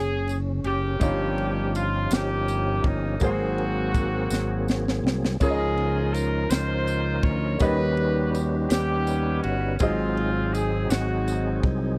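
Jubilant and soulful, this slow gospel passage in 6/8 at 55 BPM is cut from a longer piece. A tight, up-front horn section carries the melody with light vibrato over a clear grand piano in the background, a gritty, overdriven tonewheel organ holding sustained chords through a slow rotary speaker and chorus vibrato, and a fingered electric bass sitting up front, while a crisp fusion drum kit with a punchy kick and high-tuned snare enters at 0.3 seconds alongside a jingly tambourine and plays a fill at 4.3 seconds. The chords move from Gb5 through Eb9/G, Ab9, Db69 and Eb7alt to Ab7, all in a dry, close 1970s-style studio sound.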